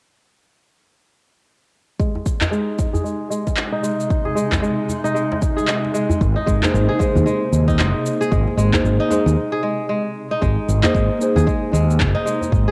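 Crisp, ringing kora arpeggios open this earthy, swung organic downtempo excerpt at 2.0 s under a filter sweep, alongside an overdriven deep electronic kick and overdriven shaker and handclaps, with a soft-handed djembe joining in the background at 2.2 s, while a blurred granular cloud pad with slow attack and long release drifts in behind, a round, punchy fretless electric bass arrives up front at 6.2 s with dark, warbling, felt-like synth keys just after, and a break lands at 9.4 s in this warm home cassette recording.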